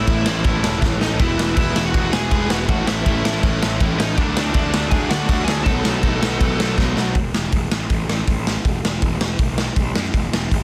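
A high-gain lead guitar, dark and distorted with delay, carries the melody over two bright, picked rhythm guitars, one crunchy and one raw and overdriven, tucked in the background, while a growly fuzz bass and a gritty, up-front garage drum kit with a boomy kick and pumping stone-room sound drive this upbeat, energetic punk rock excerpt at 161 BPM in E mixolydian. The chords move from A through E, D and B7, with drum fills marking the turns at 0.8 and 6.8 seconds. By 7.1 seconds the guitars have dropped out, leaving the bass and drums alone to pound through an unaccompanied stretch that lands on B5, all in a dense, dry and heavily limited mix.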